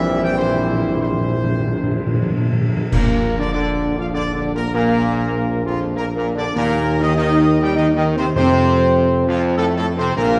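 Heard through a reverberant scoring-stage space with a dark, warm production, this majestic, triumphant classical fanfare in Bb major moves at 99 BPM in 3/4, with a warm, distant trumpet section carrying the melody over mellow, soft-attacked French horns and close, bright trombones holding sustained chords, a smooth-topped tuba anchoring the bass, crisp hard-mallet timpani opening with a fill and returning at 8.4 seconds, and clash cymbals with concert bass drum striking a band accent at 2.9 seconds.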